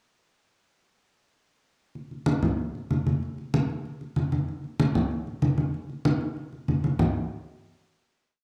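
A straight 4/4 Latin groove at 190 BPM drives this short, joyful and sunny piece, carried entirely by a pair of low-tuned acoustic congas, high and low, that enter at 2.0 seconds and play through a brief verse with slaps and open strokes. The drums have a thick-skinned, warm tone and sit up front yet sound distant, as if in a large room, bathed in a moderate spring reverb. The congas stop at 7.1 seconds, just as a final hit arrives at 7.0 seconds and rings out to 8.3 seconds, all captured with the homespun character of a cassette home recording.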